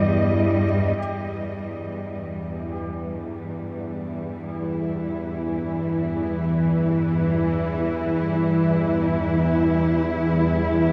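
Drenched in a huge, long-tailed reverb with a worn cassette tint, this ominous dark ambient drone opens on a brief glint of brilliant baby grand piano arpeggios set in the background and gone by 1.0 s. Up front, a tense, detuned, sawtooth-edged bowed-like drone sustains with vibrato while a lush, dark symphonic cello section holds vibrato-laden chords, both fading in from 1.0 s to build an unsettling, shadowy swell of sound.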